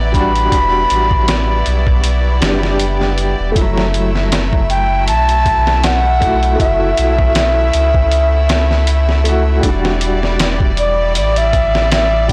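Trip hop at 79 BPM in F# phrygian, dark and cinematic, with a swung groove of gritty, pitched-down sampler-style drums (thumpy kick, medium-tuned snare, hi-hat) sitting up front beside a round, sine-like sub bass thickened by tube saturation. A woody upright piano with audible action noise and tape echo with tremolo plays accompaniment, while a chamber violin section holds biting, earthy sustained chords roughened by vintage 12-bit sampler grit. Over this, a bright, reedy baroque flute carries the melody with crisp attack and straight tone, as the harmony moves from Em9 to F#m7 at 3.6 seconds and back to Em9 at 9.6 seconds in a blown-out, overdriven mix with studio reverb.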